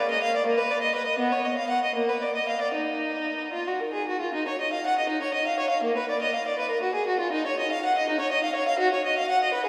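A single bowed violin opens the recording, playing alone in a baroque-style suite movement with an introspective, flowing mood. The tone is rich and focused, shaded with vibrato, and the line moves freely in 6/8 with a gently pushed and pulled rubato, ranging from Bb3 up to F#5. A long, wet cathedral reverb, lasting about 5.5 seconds, surrounds the instrument, and the listener seems to hear it from further back in the room. The opening passage is restated at 4.3 seconds, so the short section heard twice makes up the whole of this brief excerpt from a longer piece.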